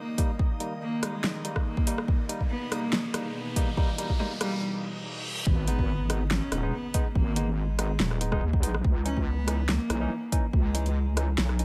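A heavy, saturated wobble bass with chorus drops in at 5.5 s to anchor this brooding, meditative half-time deep dubstep excerpt, landing on an up-front, tape-toned electronic kick and a deep house kit of fat snare, rim click and metallic hi-hats that have been playing from the start. A barky tine electric piano sends dub-echoed stabs through a combo amp, and an intimate, airy-bowed cello carries the melody with dub echo over a tense, string-like drone, a very quiet reversed, dreamy swelling texture, and an electronic riser, reverse cymbal and impact that mark the build-up and the drop.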